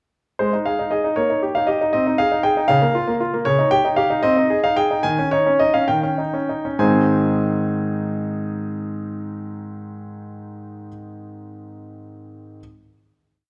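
A graceful, playful classical-period piano sonatina in Ab major and 6/8, moving at 64-79 BPM in dotted quarters, where a bright concert grand with brilliant, polished tone, deep bass and long sustain carries a single-line melody over broken-chord bass up front in a wet recital hall, slowing from 2.7 to 6.8 seconds as the theme closes before a final Ab chord rings from 6.8 seconds within a dark production.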